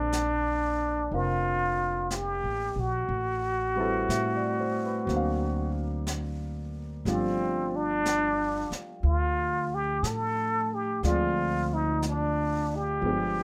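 A moderate club reverb gives this short cut from a longer piece a smoky, intimate room sound, with the trumpet and upright bass sitting up front. It is a wistful jazz ballad in G minor at 60 BPM, in 4/4 with a swung eighth-note feel, tuned slightly sharp to A4 = 445 Hz. A trumpet with a plunger mute carries the melody from C4 to A4 as a whispered, breathy solo, with a wah-wah colour, vibrato, a soft attack and a smooth top. A grand piano with a warm, smooth, vintage tone supplies the accompaniment over chords moving from Bbmaj9 through Am9 and D7alt to Gsus2, reaching Dm7b5 at 11.0 seconds. A woody, bright pizzicato upright bass on steel strings anchors the low end, while an airy, polished brush kit with a high-tuned snare and hi-hat enters at 0.1 seconds and stays low in the mix.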